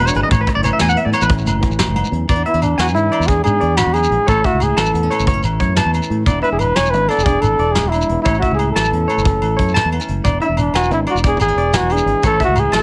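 Rolling in 12/8 at 121 BPM, a soft brush kit with a fat snare and tight kick drives this danceable, carefree highlife guitar band excerpt in E mixolydian, with a punchy fingered electric bass, a close, grainy shekere, and ringing, saturated agogo bells tucked in the background. A clean electric guitar solo opens the first 2.3 seconds, while a twangy, slightly broken-up electric guitar spins arpeggios through tape echo over a dark, fingerpicked nylon-string guitar with audible finger squeak. At 2.5 seconds a breathy, up-front trumpet takes the melody in a jazz style with light vibrato and scooped notes over alternating A and E7 chords, all set in a light reverb.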